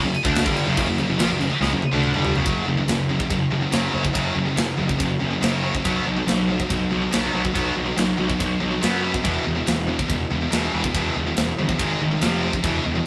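Two bright, high-gain distorted guitars and a growly, fuzz-overdriven picked bass open together on an F#5 power chord in this aggressive, dark heavy metal cut at 142 BPM in straight 4/4, tuned to A4 = 436 Hz, as a tight, polished drum kit with a medium-tuned snare and bright cymbals joins almost at once, throws in a fill from 1.6 to 2.5 seconds, and drives the riffs through B5, E5, G#5 and F5 in a rough rehearsal-room sound with moderate reverb.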